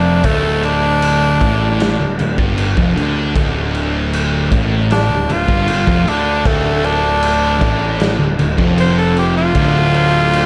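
Stoner and doom metal at 77 BPM in D minor, heavy and sludgy, with a raspy, gritty tenor saxophone soloing up front with vibrato and analog delay, over two dark thick fuzz guitar riffs sitting quietly in the background, a round, punchy overdriven fuzz bass, a raw garage drum kit with a punchy kick, medium-tuned snare and crash entering at 0.2 seconds in a bright stone room, and a double-tracked, brighter distorted fuzz guitar riff joining at 6.5 seconds, all under light studio reverb in this short cut from a longer piece.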